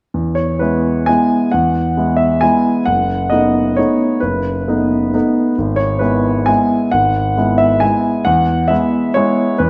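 Graceful and sparkling, this short excerpt from a classical piano waltz in E major moves at 133 BPM in 3/4 with an uneven, rubato lilt, as a solo grand piano with a warm, polished, present tone and long sustain sits up front in a reverberant recital hall, ranging from F#1 to G#5 over chords moving from E to B7/F# and E/G# before settling back on E at 8.3 seconds.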